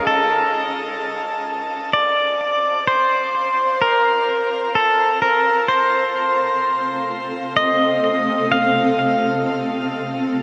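Ambient excerpt at 64 BPM in a straight 3/4, tuned to A4 = 442 Hz, weightless and luminous: an up-front, twangy pedal steel guitar with slide, volume swells and delay carries the melody over a cloudy, detuned granular pad that fades in from 0.1 seconds with slow-attack sustained chords, moving from a rootless Dm7 to F/C at 5.7 seconds, all bathed in a long shimmer reverb and a dark production.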